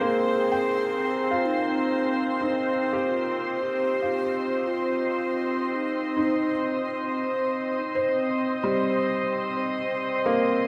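Ambient and weightless, this serene fragment of a longer piece sets a hollow, airy alto flute melody with delay over a morphing, warbling wavetable pad that sits up front in chorus and its own reverb, holding a Cm/Ab chord. A felt-muted upright piano adds soft, intimate arpeggios with delay, while a very quiet sawtooth analog drone and a glassy, beating glass harmonica in the background fill out the texture. The flute stops at 7.4 seconds, leaving the remaining parts to sustain until 10.7 seconds inside a long, wet shimmer reverb.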